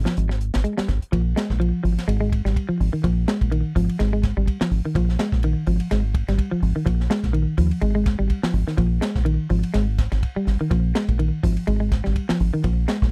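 A lightly swung sixteenth-note groove in 4/4 drives this intense, hypnotic afrobeat passage cut from a longer piece, with a tight funk kit of kick, medium-tuned snare, hi-hat and bright ride cymbal sitting up front beside a dark, round, foam-muted fingered bass. A clean, picked electric guitar repeats low arpeggios touched with slapback echo as the harmony rocks between Ab5 and Bb5 throughout. The dry, close sound recalls a 1970s studio, keeping every part intimate and immediate.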